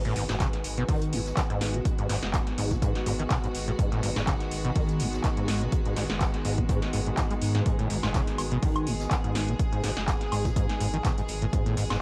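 Dry and close, with the slightly worn grain of a home cassette recording, this trippy, driving acid house excerpt is built on a squelchy, distorted sawtooth acid bass riff that runs through a filter sweep, chorus, analog delay and sidechain pumping, over a round, deep analog bass that enters at 0.2 s. A punchy, tape-warm electronic kick sits up front from 0.4 s, joined by an electro drum machine with metallic hats, claps, snare and woodblock, and a very quiet jazz brush kit on hi-hat and snare. Above them, a bowed studio string section holds floating, pumping chords over a G#m7, while a moody, detuned ambient pad hovers faintly in the background.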